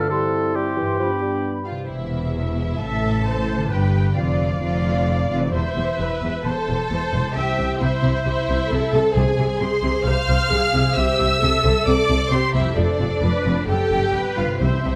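Classical orchestral music, a restless, urgent passage cut from a fast romantic movement, opens with a brief woodwind and brass passage: a pure-toned small flute group, an up-front oboe, a distant clarinet, a mellow bassoon and a dark, roomy French horn section, with a ringing concert harp playing arpeggios in the background throughout. From 1.6 seconds the lush strings take over, with a vibrato-rich first violin melody over a second violin line, smooth viola accompaniment and a focused cello and double bass foundation. Round, soft-mallet timpani enter at 7.4 seconds as the harmony darkens toward a tense closing chord, all in a close, detailed sound with light reverb.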